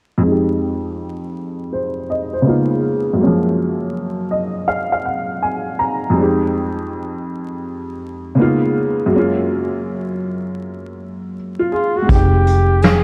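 Dark and hazy with vinyl crackle and a moderate plate reverb, this nostalgic lo-fi hip hop excerpt in F phrygian moves at 81 BPM with a swung 16th feel. A woody, slightly detuned upright piano with audible action noise opens alone at 0.2 seconds under a filter sweep, cycling Fm9, Db13 and Gbmaj9 and adding a fill along the way. A soft, breathy flugelhorn melody with vibrato enters at 11.7 seconds, and a round, foam-muted electric bass and a punchy brushed drum kit join at 12.1 seconds.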